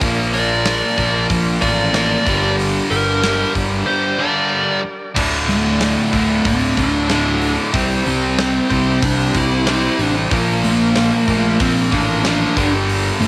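Driving, gritty classic rock at 93 BPM in D minor, where a dark, smooth overdriven lead guitar sings the melody from 0.3 seconds over a stack of three overdriven rhythm guitars, one double-tracked, one bright and one a very quiet semi-hollow, all playing the riff, alongside a punchy fuzz bass, a big acoustic rock kit with a punchy kick and rolled-off top, a very quiet full tonewheel organ on slow rotary holding sustained chords, and a very quiet bright second lead guitar that stops at 4.8 seconds, all in light reverb with small room ambience.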